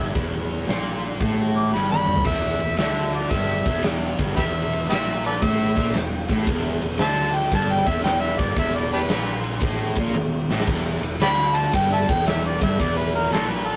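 A rough rehearsal-room recording with tube saturation and a moderate small-room reverb frames this brooding, gritty blues rock power-trio excerpt with a southern rock edge, swinging in 4/4 at 114 BPM in E minor over a single Em chord. A double-tracked, bright fuzz guitar riff sits up front alongside a growly, overdriven fingered electric bass, while a huge arena drum kit with a punchy kick, medium-tuned snare and bright cymbals pumps in its hall-like space, with fills at 1.7 and 10.1 seconds. The warm, overdriven harmonica carries the melody from the start, and from 2.3 seconds it takes a jazz-style solo, its vibrato, tongue slaps and scooped notes ringing present and front and center.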